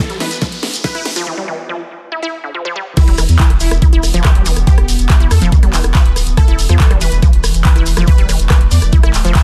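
An overdriven, knocking electronic kick sits up front from 0.4 seconds in this psychedelic trance excerpt, joined by a round, deep analog bass and a big-room dance kit with a huge snare, handclaps, hi-hat, rim click and crash, plus a grainy shekere tucked in the background. A drum fill and an electronic riser open the build-up, a filter sweep runs across it, and after a short break from 1.3 seconds the drop lands at 3.0 seconds. Above this, a bright, warbling pluck riff with vintage 12-bit grit and dub echo, an airy supersaw stab melody with phaser and delay, and a morphing wavetable pad with chorus all pump to the sidechain, giving the piece an alien, dense and heavily limited feel.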